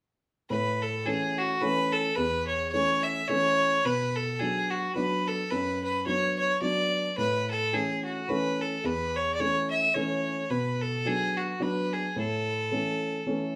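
A small, wet room gives this live-sounding Celtic waltz its ambience, with fiddle and upright piano both sitting up front. The bright, rollicking tune moves at 108 BPM in 3/4 with a light swing, in A major, as a single bowed fiddle with a clear, nasal, earthy tone carries the melody. A warm, woody upright piano accompanies it through A and Bm chords. Both play from 0.5 to 13.6 seconds in this short section cut from a longer piece.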